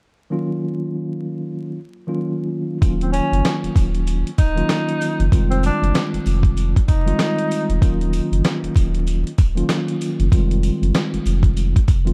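A swung boom-bap hip-hop groove enters at 2.8 seconds on a gritty, compressed, sampler-style kit with thumpy kick, fat snare, hi-hat and rim click, joined by a thick, saturated sub bass and faint jingly sleigh bells under a mellow tine electric piano that opens alone, while a breathy, distant tenor saxophone with subtone, vibrato, scooped notes and tape echo plays a whispered jazz solo from 3.0 to 7.8 seconds, all set in a tough, dark, dry production with vinyl crackle.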